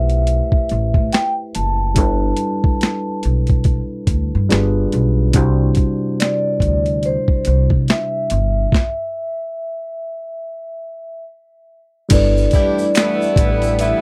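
R&B and neo-soul with a late-night, sultry mood: a mellow, ringing soft-mallet vibraphone carries the melody up front over a worn, slightly out-of-tune, lightly overdriven tine electric piano and a woody pizzicato upright bass, while a gritty, pitched-down, sampler-style boom bap drum kit with a thumpy kick and high-tuned snare sits up front under a swung 16th-note feel. After a stop at 8.7 s, the music resumes at 12.1 s, when a distant tube shaker and finger snaps enter in the background, followed by tight, jazz-style horn stabs and silky, phased string-machine chords with ensemble chorus. The sound is dry and close, like a 1970s studio recording, and the excerpt is cut from a longer piece.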